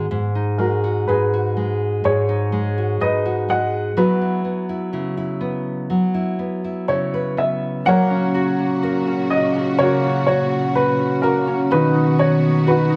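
Melancholic and reflective, this slow acoustic folk-pop ballad at 62 BPM, cut from a longer piece, opens with a full-bodied, fingerpicked nylon-string guitar up front, joined at 0.6 seconds by a woody, natural upright piano carrying the short-sustained melody over G#m7 and F#7sus4. At 7.9 seconds a concert harp adds ringing arpeggios as a lush, bowed string section enters with expressive vibrato and soft-attack sustained chords, all bathed in a large, wet studio reverb.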